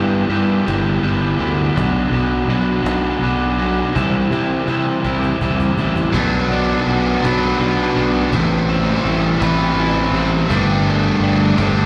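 Cool and restless, this slow indie rock fragment moves in 6/8 at 55 BPM, with a dark, compressed overdriven guitar riff carrying slapback echo up front beside a round, fuzzy fingered bass, while a woody cajon with faint snares sits distant in the background and plays a fill from 4.0 to 6.1 seconds. At 6.1 seconds a bright fuzz guitar with distortion and analog chorus joins with a second riff as the chords move from Bm through Amadd9 to Gsus2. It sounds like a live gig heard through the venue's PA, with little reverb.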